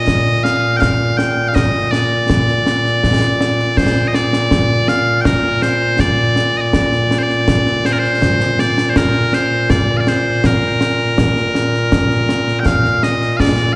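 Loud, bright bagpipes lead this ceremonial, stirring fragment of Scottish traditional pipe music, carrying the melody from the very start in a piercing, continuous solo voice held up front. The pipes span a range from Bb2 up to G5 in Bb major, moving in 3/4 at 81 BPM with a straight feel. Concert snare drum and concert bass drum join almost at once, their acoustic sound set in a live room and shaded by dark cymbals. The performance comes from a live gig heard through the venue's PA, wrapped in light, recital-hall reverb. Cut from a longer piece, the passage turns to a new section at 12.7 seconds, just before it breaks off at 13.8 seconds.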